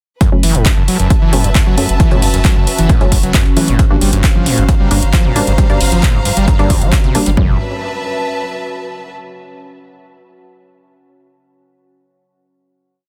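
Driving peak-time techno with a dark mood, built as a short drop over F#m and Gm that settles on a final F#m chord at 7.4 seconds. A punchy, up-front four-on-the-floor kick with floor toms anchors the groove, joined by metallic closed and open hats and handclaps on the backbeat, while a gritty, tape-warm sampled breakbeat of hat and snare sits very quietly underneath in a small room. A saturated, thick sub bass fills the low rumble between the kicks, and a screaming, squelchy acid line with accents, slides and resonant filter sweeps runs a 7-step loop that drifts against the bar, heavy with distortion, chorus and delay. Muted dub chord stabs in the background move one syncopated shape in parallel through cassette-tinged chorus and delay, as a moody sawtooth pad drones beneath in its built-in reverb. A clear, lush bowed string section with vibrato shifts slowly through its chords and rings on alone after the other parts stop, closing the piece at 9.1 seconds, with pumping sidechain breathing through the bass, acid, stabs, pad, strings and hats.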